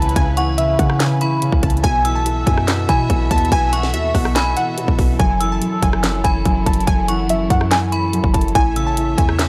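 Trap hip hop at 143 BPM in a half-time feel, this eerie, hard-hitting excerpt sets glassy digital keys carrying the melody against a bright, inharmonic FM bell line (both treated with chorus and tape echo), felt-muted upright piano accompaniment, smooth bowed studio strings holding sustained chords, a deep, boomy 808-style bass, and an up-front trap kit with a hard-clipped kick, sharp snare, metallic hats, handclaps and rim clicks, all in a dry, gritty hardware recording with transformer saturation over chords moving from C#m7 through B7sus4 and F#m7 to A.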